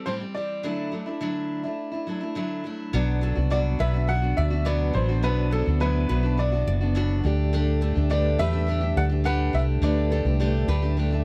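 A dry, close recording with a 1970s studio intimacy frames this carefree, heartfelt acoustic pop fragment at 105 BPM in a straight 4/4, cut from a longer piece. A bright, slightly detuned upright piano carries the melody from the start, its woody, worn tone and audible action noise sitting present and long-sustained over a full-bodied picked steel-string acoustic guitar, moving from Am7 to Dadd9. At 2.9 seconds the arrangement fills out as the harmony turns to Bm: a round, dark fretless electric bass arrives up front, a reedy electric piano with fast tremolo joins in the background, and a clean tonewheel organ with a stopped rotary speaker holds very quiet sustained chords. A fingerpicked nylon-string guitar with a deep classical character adds arpeggios in the background from 3.2 seconds. The progression settles on Dsus4 at 7.2 seconds.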